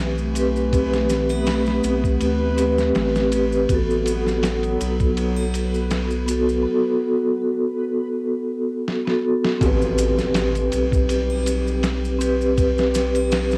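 Brooding and cinematic, this trip hop excerpt sets a mellow, up-front vibraphone played with soft mallets and treated with tremolo and tape echo over a round, deep analog bass, a warbling, nostalgic pad that drops out at 6.6 seconds, a reversed, dreamy swelling texture in the background, maracas and triangle, and a gritty, pitched-down boom bap sampler-style kit whose fill at 8.9 seconds leads into a background electronic impact at 9.6 seconds, all carrying the character of a home cassette recording.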